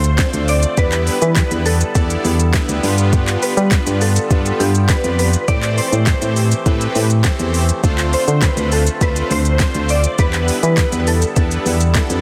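A straight 4/4 dance-pop groove at 102 BPM rides on an up-front, overdriven electronic kit of soft kick, fat snare, crisp hats, handclaps and shaker, with a punchy, round FM bass pumping against the sidechain beneath it, in a confident yet bittersweet D dorian mood cut from a longer piece. A shimmering, dreamy bell with a vintage warble, ensemble chorus and tape echo carries the melody, while a bold detuned sawtooth polysynth with chorus enters at 0.2 seconds and a reedy, breathing harmonium sits in the background holding sustained chords through Dm7, Em7, G7 and Am7. Light reverb and a dense, heavily limited modern master keep the sound full and forward.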